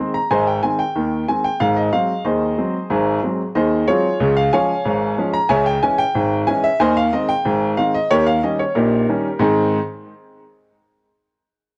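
The rhythm bounces along in a steady, straight two-beat pulse, giving this short excerpt of ragtime piano a lively, jaunty feel. A single grand piano carries everything alone, sitting up front with a warm tone and ranging from deep bass notes up into the bright upper register. The harmony moves from the home chord through a dominant seventh to the subdominant, darkens briefly with a minor turn, then heads back home by way of another seventh chord. The piano stops at 9.8 seconds, just after a new section begins at 9.4 seconds. A moderate studio reverb adds a touch of space, while the sound of worn cassette tape lends a warbling pitch drift that gives the recording an aged, wobbly character.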